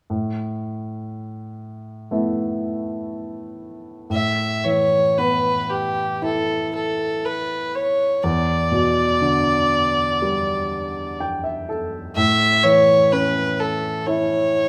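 Rubato and uneven around 60 BPM in 4/4, this wistful, nostalgic Celtic slow air in A mixolydian opens with an intimate upright piano, its action noise audible, laying down Asus2 before a dark, woody bowed fiddle with light vibrato takes up the melody at 4.1 seconds, moving over Em7 at 8.2 seconds and a brief piano fill at 10.7 seconds, all carried by a moderate recital-hall reverb.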